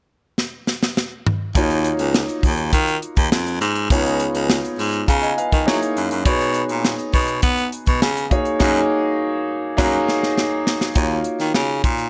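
Nocturnal and bittersweet, this short excerpt of polished 1980s jazz-funk pop moves at 102 BPM in E-flat minor, opening with a tight, dry funk drum fill before a raspy, gritty baritone saxophone with light vibrato takes the bass role up front from 1.6 seconds. A clear concert grand piano with long sustain and a subtle chorus supplies accompaniment over rich extended chords like Ebm9, Db9, Gb13 and B69, while the acoustic kit's bright cymbals, medium-tuned snare and tight kick drive things along. A band accent from 8.6 seconds leads into a shared drum and piano fill before the music settles back on Ebm9 at 11.0 seconds, all in a small room with light reverb.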